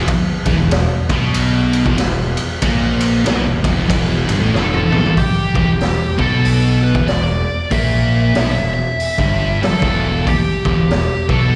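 Heard through a live venue's PA with light recital-hall reverb, this brooding, ominous stoner and doom metal excerpt in E minor moves at 94 BPM in 4/4 with a swung eighth-note feel, as two thick fuzz guitars sit in the background on a riff over an E5 chord, alongside a growly, punchy fuzz fingered bass and an up-front raw garage drum kit with a boomy kick and gritty, rolled-off top. A drum fill at 4.5 seconds coincides with the entry of a dark fuzz lead guitar carrying the melody through wah, slapback and tape echo. At 5.2 seconds the music shifts to a new section on Em.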